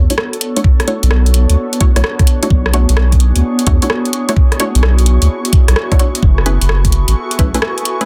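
This moody, bouncy two-step UK garage clip at 129 BPM in B dorian opens with a smooth, warbling vintage pad holding Bm11 chords, bright detuned chord stabs trailing dub echo, and a thick, saturated sub bass sitting up front. A mellow, ethereal pad with ensemble chorus and built-in reverb joins at 0.1 s alongside a swung garage kit of metallic hats and rim clicks with a clipped snare, and a knocking kick enters at 0.6 s. The harmony moves to F#m11 at 6.2 s, and the sidechained pads pump beneath a dense, heavily limited master.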